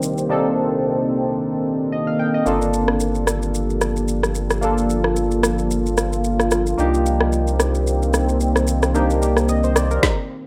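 Deep and soulful, this amapiano excerpt with a gentle swing sets round, sawtooth-edged analog keys with a chorus shimmer against a moody, evolving pad thickened by detuned unison and reverb over Cm9 and Gm7, while a layered electronic drum kit with a deep kick, woody snare, rim click and shaker drops out between 0.3 and 2.5 seconds before a thick, saturated sub bass enters at 2.5 seconds, all in a rough home-demo mix with light reverb that halts at 10.0 seconds.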